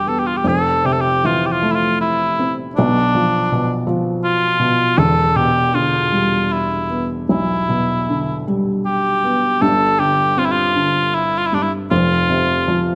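Celtic folk slow air in 3/4 at about 78 BPM, its uneven, rubato pulse carrying a longing, mournful mood through this 12.9-second fragment of a longer piece. A warm cor anglais sings the solo melody up front in a classical style with light vibrato, while a soft, felt-muted upright piano gives mellow, intimate accompaniment with short sustain and audible action noise, moving through Fmaj7, Bdim, Em7 and Gsus4 before settling on F5. Both parts sit close to the listener inside a moderate recital-hall reverb.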